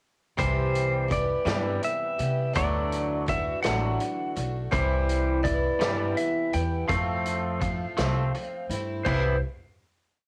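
Folk rock with a heartland rock lilt in 6/8, this short, hopeful piece pairs a clean, twangy lap steel singing a slide melody of short motifs with a bright, shimmering twelve-string acoustic strumming open chord shapes in eighths. A compressed electric guitar adds a palm-muted riff, the upright bass plays a woody pizzicato dotted figure with tube saturation, and a gritty vintage drum kit with dark cymbals, a rolled-off top and a punchy kick keeps the groove until 9.2 s. The home cassette recording sits in light reverb, and the verse settles onto a final chord at 9.1 s.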